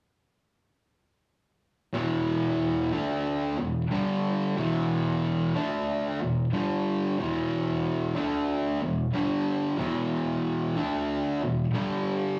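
Metal excerpt at 92 BPM in E minor, heavy and hypnotic, where a lone bright, double-tracked fuzz guitar plays up front from 1.9 to 12.4 seconds, cycling through E5, D5, E5 and G5 power chords with compressed, distorted grit, captured in a rough rehearsal-room recording with tube saturation, small room ambience and a wet studio reverb.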